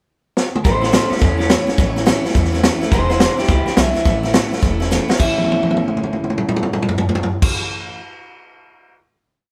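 A swung train beat at 211 BPM drives this short, rollicking rockabilly piece in A major, with a vintage drum kit up front: punchy kick, high-tuned snare and fills that punctuate the pickup at 0.4 seconds and carry the final chord from 5.3 seconds. Woody upright bass plays a thumpy two-beat root-and-fifth line with walk-ups, while a dreadnought acoustic guitar with fresh strings strums eighths in open chord shapes through A, E7 and back to A. On top, an electric guitar through a small old amp plays a twangy, slightly broken-up lick-based theme, and the whole band sounds live in a stone room with moderate reverb.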